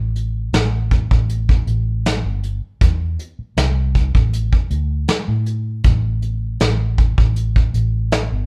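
Mournful and soulful, this short excerpt cut from a longer piece is a straight-eighth soul blues in A minor, moving at an unhurried 79 BPM in 4/4. A vintage muted fingered electric bass carries the low end from the start, its foam-muted, round tone sounding dark and amped as it ranges between G1 and A2. A vintage brush drum kit joins at 0.2 seconds, with brushes across the hi-hat, a medium-tuned snare and a punchy kick, its smooth, rolled-off top giving the kit a warm, studio-room character. Both parts sit up front in the mix, and the drums carry a touch more weight than the bass. Light reverb and the feel of a band playing live in one room give the pair an intimate, close presence until the kit drops out at 8.3 seconds and the bass closes at 8.5 seconds.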